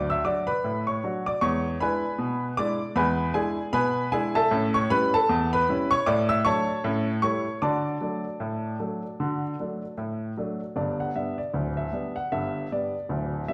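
A solo upright piano opens this playful, lively ragtime excerpt from a longer piece, sounding clear, woody and up front, with the clatter of its action audible beneath the notes. The playing sits in a bouncy 2/4 with a swung sixteenth-note feel, spanning the keyboard from D1 up to E6. The harmony moves through dominant-seventh turns before settling home, and at 10.8 seconds a new section begins on a G chord. The instrument feels intimate and polished, yet a generous, wet studio reverb gives it the air of a large room. The piano plays alone throughout, from 0.0 to 13.5 seconds.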